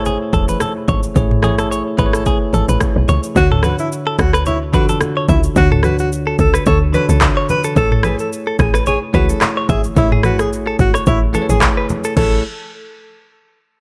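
Romantic and sunny, this afrobeats excerpt at 109 BPM in A major rides swung sixteenths as a bell-like tine electric piano comps over Amaj7 and Dmaj7, a twangy, compressed clean guitar riff picks through tape echo, a woody, punchy log drum bass pulses low, an up-front, overdriven electronic kit with a deep kick, handclaps, rim click, shaker, toms and crash drives the groove, soft-handed low-tuned congas murmur very quietly beneath, and from 3.4 s a breathy alto saxophone with vibrato and tape echo sings the melody, all set in light digital reverb.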